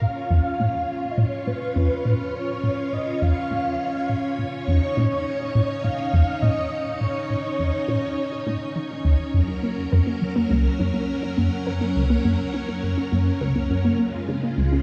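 Steeped in a wet plate reverb and a dark, warm production, this excerpt of ambient, sequencer-driven space music feels expansive and hypnotic in a straight 4/4. A squelchy, resonant blip pluck sits up front with a phased, delayed riff in the low register, beneath a lush vintage string machine holding full sustained chords with ensemble chorus and shimmer reverb. A breathy, flute-like synth lead with vibrato sings the melody until 9.0 seconds, and at 9.5 seconds a warbling, lo-fi pluck with cassette-tape character joins with arpeggios as the harmony moves from Bbm to Gb and then Db.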